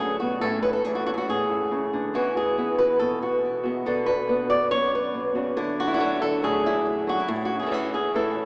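A fingerpicked acoustic flamenco guitar leads up front, carrying the melody across a range from F#2 to D5 throughout this short 8.5-second fragment of a longer piece. Beneath it, a second fingerpicked flamenco guitar sits in the background playing stabs, lower in level and spanning E2 to F#4. The mood is festive and proud, moving at 140 BPM in a straight 4/4 feel in A major. The harmony travels from A through Eadd9, Bm and Dadd9 before returning to A at 7.3 seconds. Both guitars share a warm tone, bathed in a wet cathedral reverb with a long 5.4-second tail that suggests a church or concert hall, though the overall sound has a small-speaker character.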